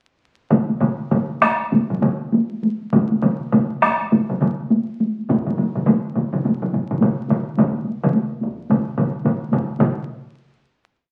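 The rhythm runs in 4/4 with a 60% swing on the sixteenths, pushing forward from 99 toward 113 BPM as the tempo speeds up across this short, complete piece of Japanese traditional taiko drumming. The mood is driving and ceremonial. Up front, one taiko ensemble struck with hard sticks repeats a close-miked pattern, while a second ensemble on heavy sticks plays taiko phrases with a vintage, band-limited tone. Further back sit a solo taiko drummer with hard sticks in a live room, playing taiko phrases, and another heavy-stick ensemble in a small room holding a repeating pattern. All parts begin at 0.5 seconds, and a final hit arrives at 9.8 seconds to close the piece. The whole recording carries the crackle of a very old 78 rpm record and sits in a wet, large studio reverb.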